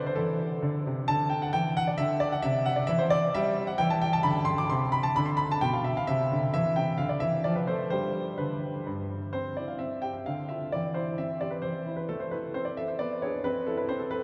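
A clear, smooth grand piano with a vintage character and short sustain plays alone and up front through this elegant, graceful classical-period sonatina in a straight three-four. A long, wet cathedral reverb surrounds the instrument within a dark, warm production. A second section begins at 9.3 s and turns toward minor harmony before the excerpt is cut off at 14.2 s.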